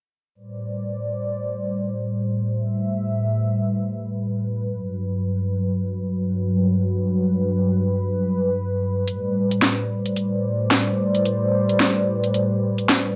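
An electronic drum-and-bass kit comes in at 9.1 seconds, up front and overdriven, with a cracking snare and bright hi-hats that sound layered and re-recorded in a small room. This glitch hop fragment carries a swaggering, gritty mood over a swung sixteenth-note feel in 4/4. Before the drums arrive, a detuned sawtooth analog pad holds sustained chords on its own, smooth and mellow with a soft attack and a chorus effect, sitting up front in the mix. Its harmony moves from Am11 to Gmaj7 at 4.7 seconds and returns to Am11 as the kit enters. A moderate studio reverb lends the short excerpt a modest sense of space.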